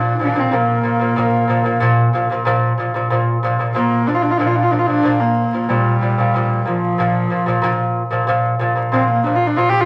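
Mongolian folk with a proud, galloping mood, this short cut puts a husky, earthy horsehead fiddle up front carrying the melody with smooth portamento, over delicate fingerpicked arpeggios from a mellow double-strung lute, while an airy bamboo low xiao adds a background second line with vibrato until 2.5 seconds, all set in a wet studio reverb under a layer of vinyl crackle.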